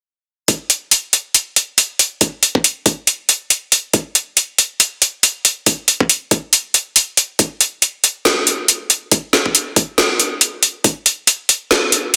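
From 0.5 seconds, an electronic kick drum and a garage-style drum kit enter together, setting a heavy, brooding deep dubstep mood in a half-time feel with a swung sixteenth-note lilt. The kick is layered and overdriven, with a knocking punch and its low end trimmed by a high-pass filter, sitting up front. The kit supplies a woody snare and metallic hi-hats, also overdriven and placed up front, and it stands a little louder than the kick. A moderate room reverb gives the drums some space, while the dense, heavily limited master keeps the sound tight and forceful. The kick drops out at 10.9 seconds, leaving the snare and hats to carry on alone until this short cut from a longer piece ends at 12.2 seconds.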